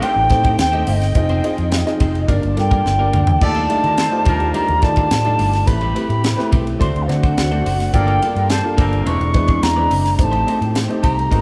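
A polished, slick sound fills a large studio with moderate reverb as a band plays live in one room on this bittersweet 1980s jazz-funk pop excerpt at 106 BPM in straight 4/4. An airy clay alto ocarina with rolled-off highs carries the tongued, expressive melody over a tight, up-front funk drum kit with a high-tuned snare, a round, amped fingered electric bass entering at 0.2 s, a smooth vintage grand piano with deep bass, a clean, compressed twelve-string electric guitar riff in the background, and a distant, very quiet bowed string section holding lush, woody chords. A clear horn section with light vibrato and tape echo adds a second line until 9.3 s, a drum fill lands at 2.9 s, and the harmony moves through rich chords such as Am7b5, Ebmaj9#11 and E7b13.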